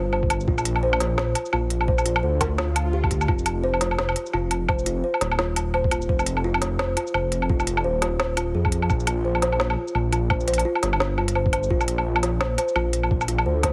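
A dark, detuned saw bass rumbles up front with tube saturation through this tense, heavy half-time drum and bass piece at 171 BPM, alongside a woody, thumb-plucked kalimba playing arpeggios coloured by vintage 12-bit sampler grit and digital delay, an organic electronic kit of crisp hi-hat, shaker, snare and woodblock, a pitched-down, thumpy electronic kick, and a brief electronic swell in the background at 2.7 seconds, all framed by light reverb and a heavily compressed, radio-like sound.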